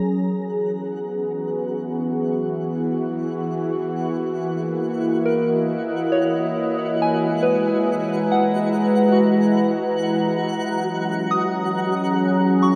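A dark, morphing wavetable pad sits up front in this serene, weightless ambient excerpt at 69 BPM in E lydian, holding sustained chords under a filter sweep while a soft, warbling FM bell spins delayed arpeggios, a twinkling granular texture with octave-up shimmer fades in, and a tense, string-like drone with vibrato enters at 2.0 s, all bathed in a huge, wet reverb.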